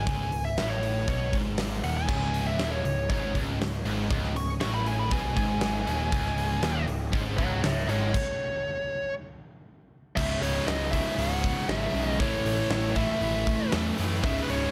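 A dark, high-gain lead guitar with slapback echo solos from the opening until 10.2 seconds, a stop cutting in at 8.1 seconds, over a menacing, aggressive hard rock groove at 119 BPM in C# minor. Three distorted rhythm guitars, one sludgy, one tight and double-tracked, grind out riffs in the background beneath a growly, punchy picked bass and a huge arena drum kit up front, with a fat snare, punchy kick and bright cymbals in a pumping hall. A very quiet, gritty tonewheel organ with slow rotary speaker holds sustained chords from 2.1 seconds, and after the solo the harmony moves from C#m to A.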